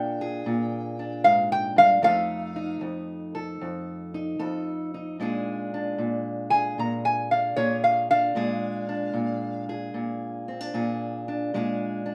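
A metal-body resonator slide guitar carries the melody up front, its metallic, nasal voice played with fingerpicks and a steel bar, taking a solo in the opening stretch from 0.0 to 5.2 seconds. This short excerpt of acoustic country blues moves at 76 BPM in 4/4 with a swing on the eighth notes, set in Bb mixolydian with a gritty, soulful mood. Beneath it, a fingerpicked steel-string parlour guitar supplies the accompaniment, its dark, boxy tone sitting up front as well while it moves through Bb7 and F7 before returning to Bb7. The slide line stops at 9.6 seconds, leaving the acoustic guitar to carry on until 12.1 seconds. A moderate studio reverb gives the pair a modest sense of room.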